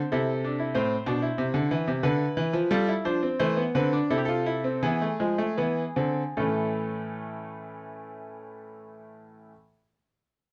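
Classical music in a baroque style, this short passage is a three-part fugue for solo grand piano, cut from a longer piece, with a serious, driving mood in straight 4/4 time. The concert grand sounds bright and brilliant, with a worn character, deep bass and a present, up-front placement, its lines spanning from the low register up to the middle of the keyboard. The harmony moves through minor-key chords, including a half-diminished sonority and a dominant seventh, and the first section gradually slows before arriving on a major chord at 6.4 seconds. A brief second section follows and runs until the fragment breaks off at about 9.6 seconds. The production is dark and warm overall, and light reverb lends the instrument a modest sense of space.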